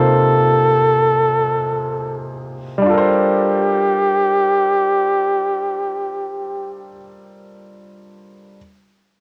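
Late-night and sultry, this short R&B excerpt in G minor drifts in free time, easing and slowing over its first 2.9 seconds as the harmony moves from Cm11 to Gm11. A breathy, close-miked flugelhorn carries the melody up front in a jazz-style solo, with vibrato and scooped notes between G4 and A4, stopping at 6.8 seconds. A warm grand piano accompanies from C3 to C5 until 8.6 seconds, both parts touched by cassette tape processing and plate reverb in a lightly reverberant home recording.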